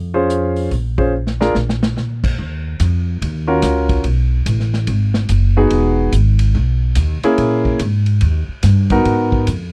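Late-night and cool, this short cut of small-group swing and bop at 144 BPM in Eb minor pairs a woody, up-front pizzicato upright bass and a natural, deep-toned concert grand piano comping through chords like Ebm9 and Emaj9 with a dark, smooth big-band drum kit that has a punchy kick and rolled-off top, which breaks into a fill from 1.1 to 2.0 seconds, all captured in a dry, close 1970s-style studio sound.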